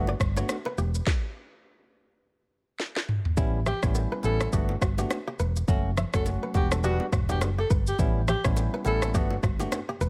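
A swung sixteenth-note groove at 104 BPM in 4/4 drives this sunny, romantic afrobeats piece in A mixolydian. It rests on an up-front electronic afro-pop kit with a deep kick, sharp snare and vintage 12-bit sampler grit, a dark, round, punchy hollow-body bass, and very quiet bongos and congas heard in a small room. A barky tine electric piano with phaser and a crisp, ringing fingerpicked kora riff through digital delay move over Gmaj7, A7, F#m and Em7; after a stop from 1.1 seconds closed by a drum fill from 2.8 to 3.4 seconds, a breathy alto saxophone with light vibrato and a smooth top takes the melody from 3.7 seconds.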